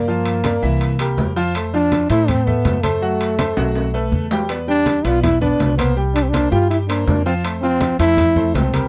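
A sunny, danceable salsa excerpt at 163 BPM in C major opens with a warm, up-front trombone singing the melody with vibrato over a bright, brilliant concert grand piano and a woody, thumpy upright bass played pizzicato on gut strings. Low-tuned congas with a thick-skinned sound sit in the background, ringing, vintage metal-shell timbales join moments later, and a drum fill arrives between 3.6 and 4.5 seconds. The chords move from Gm7 through C7, Fmaj7, F#dim and Em7, and the whole take has a dry, close 1970s studio sound with little reverb.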